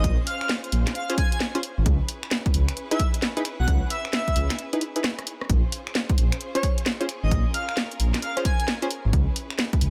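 A swung two-step shuffle drives this moody, bouncy UK garage excerpt, built on an overdriven, punchy electronic kick sitting up front and a layered garage kit of cracking snare, hi-hat, rim clicks and finger snaps with a small-room character. Underneath, a dark, detuned saw bass rumbles and beats with a deep, saturated weight, holding the low end throughout. A distant, lush violin section sustains intense, vibrato-rich chords that pump with sidechain compression, while an airy, dreamy lead with chorus and digital delay floats a soft, sustained melody on top. From 1.1 seconds, snappy detuned chord stabs with a filtered pluck and their own chorus and delay punctuate the groove as the harmony moves between Bbm9 and Dbm7. A short break at 4.6 seconds gives way to a drum fill at 5.0 seconds before the groove returns, all captured with a dry sound.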